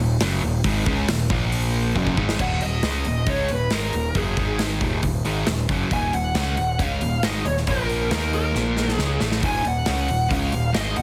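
A straight 4/4 pulse at 136 BPM drives this heavy, aggressive hard rock excerpt in Eb minor, with a big acoustic rock drum kit entering at 0.2 seconds and sitting up front with a punchy kick, medium-tuned snare, hi-hat and crash cymbal. Two sludgy, overdriven guitars grind out the riff from the start, tucked into the background, one darker in colour and the other warmer. Beneath them, a growling picked electric bass, overdriven and heard both direct and amped, anchors the low end across the Ebm, Bb5 and Ab5 changes. After a drum fill closes the opening stretch, a bluesy lead guitar arrives at 2.4 seconds with a dark, distorted tone and a digital delay trailing its melody, and the drums break into another fill from 8.6 seconds. Light reverb and studio ambience surround the band, while heavy multiband compression squeezes the mix into a radio-ready sound.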